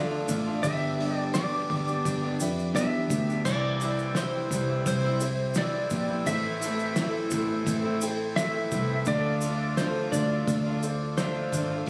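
A clean, compressed pedal steel guitar carries the melody with fingerpicked slide lines and volume swells in this hopeful, jangly folk rock and heartland rock excerpt at 85 BPM in 4/4, moving through Dm, G, C and Am. Round, foam-muted fingered bass sits up front beneath a slightly broken-up electric guitar riff through a small old amp, a full-bodied picked dreadnought acoustic in the background and a very quiet, woody upright piano. A cloth-damped, thuddy kit with a fat snare, tight kick and dark, muffled cymbals enters at 0.3 s alongside a grainy, bright tube shaker, a reedy accordion with slow beating adds sustained chords from 3.5 s, and the sound is captured on a phone in a small room with club reverb and compression.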